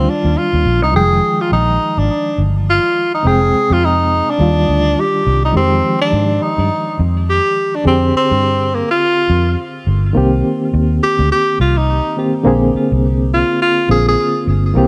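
A tenor saxophone leads this smooth, bittersweet 1970s-style soul excerpt, its warm, smooth-topped jazz tone carrying vibrato and scooped notes up front, with tape echo trailing its lines until it stops at 14.5 seconds. The groove sits at 104 BPM in 4/4 with a swung sixteenth-note feel, in F dorian. Beneath the horn, a reedy, barky electric piano supplies the accompaniment, bright and lightly overdriven through its built-in speakers and shimmering with fast tremolo. A dark, round, foam-muted electric bass anchors the low end, punchy and amped and placed up front like the saxophone. The harmony drifts between Ebmaj9 and Fm9 before a rootless Bb13, then moves to Cm7 and Bb9 in a new section from 10.2 seconds, all set in a light studio reverb.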